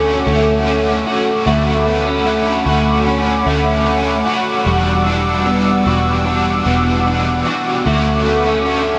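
Dream pop with a floating, blissful mood, this fragment of a longer piece moves from Dmaj7 to Em9 at 4.7 seconds and back to Dmaj7 at 7.9. A bright, overdriven, double-tracked stack guitar with tremolo and analog chorus provides the accompaniment. Meanwhile a slightly broken-up, compressed electric guitar picks arpeggios through ensemble chorus and delay, a hollow, airy, flute-like pad holds slow-attack chords with a long release, and a round, foam-muted vintage bass sits dark and up front, all within a wet scoring-stage reverb.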